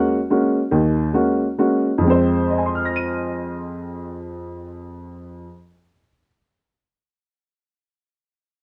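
A woody, boxy upright piano, slightly detuned and up front, plays alone for the whole 6.4 seconds of this hypnotic, intense jazz fragment in swung 3/4 at 129-149 BPM, moving through F phrygian across a range from Eb2 to Eb7, slowing down over the first 2.0 seconds on an Ab9sus4 before settling onto Fm, all tuned to A4 = 439 Hz and set in a moderate studio reverb with a dark, warm production.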